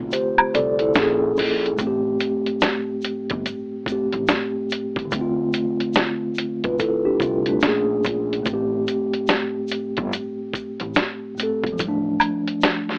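Hazy and nostalgic, this lo-fi hip hop excerpt, cut from a longer piece, moves in 4/4 with a lazy swing. A mellow tine electric piano sits up front, its tone clean and softened by cassette tape coloring as it sounds through built-in speakers, cycling through Dm7, Bbm7 and Am7 before settling on F6/A near the end. Beneath it, a woody, dark upright bass on gut strings is played pizzicato, low in the mix. The sampler-style drum kit is compressed, pitched down and muffled, with a medium-tuned snare, hi-hat and a thumpy kick that stays muted until 1.8 seconds. Close, dry acoustic percussion of tube shaker, woodblock and group handclap adds texture, and the whole recording carries a gritty, AM radio quality with a touch of light reverb.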